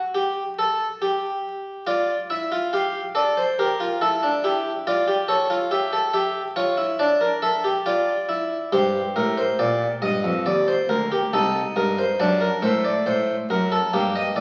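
Heard through the crackle of a very old 78 rpm record and a resonant recital-hall reverb, this is a brief cut from a longer baroque-style four-part fugue for solo harpsichord, moving at 70 BPM in a straight 4/4. The single French-style instrument sits up front with a round, warm, plucked tone on one set of strings, spanning C2 to F5 from 0.1 s to the end at 14.4 s. The mood is solemn yet driving, with harmony that opens unharmonized before circling through D minor, G minor and A7, back to D minor and G minor, then moving through C minor toward a closing D7 over F#.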